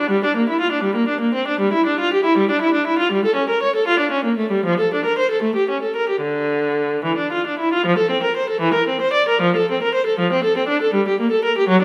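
A single bowed viola, rich and focused with a smooth top and vibrato, carries this grave, solemn baroque-style suite movement alone, sitting up front across a range from D3 to D5. The pulse moves in a rubato 6/8 at roughly 72-82 BPM in dotted quarters, opening in D minor before turning to F major at 7.9 seconds. A wet recital hall reverb with a 1.6-second decay surrounds the instrument in this brief portion cut from a longer piece.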